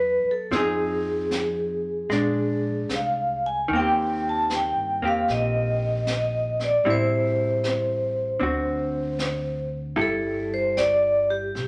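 Intimate and late-night in mood, this excerpt from a swung jazz ballad at 76 BPM sets a ringing, metallic vibraphone melody with fast motor vibrato up front, beside a dark, clean, compressed hollow-body electric guitar comping chords that drift from a rootless Cmaj7#11 through Fm7, Bb9 and Eb6 toward Am7, D7 and a closing Gsus2. Underneath, a woody pizzicato upright bass with steel strings anchors the low end, and a brushed kit with a high-tuned snare and hi-hat joins at 0.5 s with a natural, small-room sound. A large, wet studio reverb lends the whole blend a soft, spacious glow.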